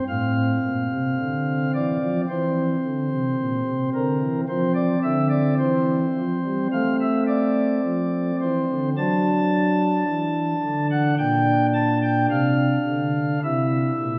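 Bathed in a lingering church reverb and heard from farther back in the room, this serene, reverent classical chorale fragment features a solo pipe organ on soft flute stops, its romantic voicing unfolding with a gently flexible rubato over 14.2 seconds.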